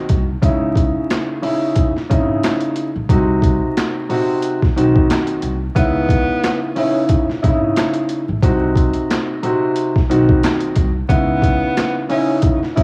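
A swung, gritty boom-bap beat drives this tough, moody hip-hop excerpt, with a compressed, pitched-down sampler kit built on a thumpy kick, a high-tuned overdriven snare, handclaps and hi-hat, while a woody pizzicato upright bass adds dark, tube-saturated weight underneath. An up-front, dark grand piano, filtered and tape-worn, lays down mellow chords that alternate between C#madd9 and Cdim throughout. At 5.8 seconds a breathy jazz tenor saxophone takes a subtone solo with vibrato, scooped notes and tape echo, all captured as a home cassette recording in a small room with light reverb and vinyl crackle.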